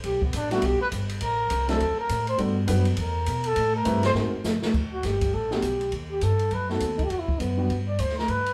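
A swung 4/4 pulse drives this short cut from a longer small-group jazz piece in the swing and bop vein, with a sophisticated, warm mood. Pizzicato upright bass with a woody tone and a distant, roomy acoustic drum kit of dark cymbals, medium-tuned snare and boomy kick keep time throughout, the drums adding a fill just before 4.7 seconds. Up front, a breathy trumpet solos over the opening section, its whispered, intimate tone shaped by vibrato, soft attacks and scooped notes. A baby grand piano with a natural sound comps beneath from 0.5 seconds, through chords that move from Em to Am, Gmaj7, Ab9 and Gadd9 before arriving on Em7. Near the close, at 7.0 seconds, a mellow, close-miked trombone briefly adds a second line, all caught as a band playing live in one room with moderate studio reverb.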